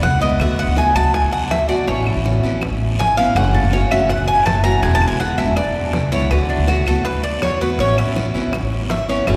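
Warm and danceable, this short excerpt of Cuban son and guajira in A major moves at 162 BPM in a straight 4/4, with a bright, metallic Cuban tres taking the lead on picked arpeggios from the first moment over a dark, thumpy pizzicato upright bass, a picked steel-string acoustic guitar with audible finger squeak joining at 0.2 seconds, round low-tuned bongos and a raspy guiro sitting quietly behind, and woody claves entering at 0.4 seconds, all bathed in a wet cathedral reverb as the chords cycle through D6, Aadd9, F#m7 and E7.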